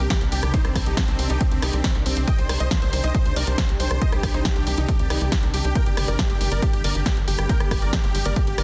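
A dense, heavily limited modern master in digital ambience carries this bittersweet, euphoric uplifting trance excerpt in C minor at 138 BPM, where a huge, detuned supersaw melody with vibrato and digital delay pumps against the sidechain over a tight, nasal sequencer bass, an up-front, tape-warm electronic kick and a punchy analog drum machine of hi-hat, rim click and snare, while a barely audible impact marks the opening half second as the harmony moves from Cmadd9 to Gm at 5.8 seconds.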